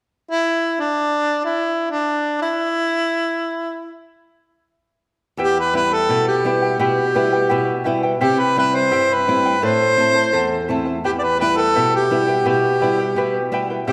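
In a straight two-beat pulse, this melancholic, wistful fragment of a longer Andean folk piece opens with a mellow harmonica carrying the melody alone from 0.3 s, its soft attack and light vibrato giving the line a classical poise. At 5.4 s the harmonica is joined by two fingerpicked accompanists: a charango, whose double and partly octave-doubled strings shimmer high above, and an up-front flamenco guitar, crisp with fresh strings and reaching down into the low register. Together the strings move through a brooding cycle of minor, major and minor chords before settling back on the home chord. The harmonica stays the clearest voice throughout, with the accompaniment sitting a little beneath it. A lush scoring-stage reverb bathes the ensemble in a roomy, lingering space that deepens the reflective mood.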